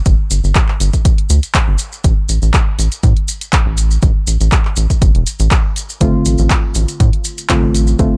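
A rubbery, hollow square bass pumps against a punchy, tape-warm electronic kick, analog drum-machine handclaps and hi-hat, and grainy maracas in this late-night deep house excerpt at 121 BPM in D minor with a light 16th swing, before a soft, mellow chord stab with chorus and dub echo enters at 6.0 s over a digital ambience.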